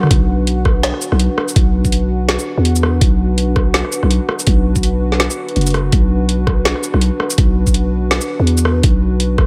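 A growling, buzzy 808-style bass sits up front from 0.1 seconds, anchoring this spacious, cinematic half-time drum and bass fragment in B minor at 165 BPM, with a knocking electronic kick, a layered kit of woody snare, metallic hats, rim click, shaker and toms recorded in a small room, and a dark, detuned analog pad holding a sustained Bm chord with chorus and sidechain pumping under light reverb.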